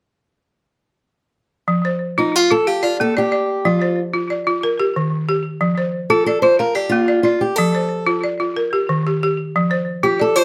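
West African traditional music in a flowing, warm 12/8 pulse, this short passage cut from a longer piece opens with an up-front balafon at 1.7 seconds, its woody, buzzing bars struck with hard rubber mallets in arpeggios that carry a slapback echo. At 2.2 seconds a fingerpicked steel-string acoustic guitar joins with a concert-style melody, also up front, as the harmony circles among F, Bb and Eb chords. Close, detailed microphones and light reverb keep both instruments clear and intimate.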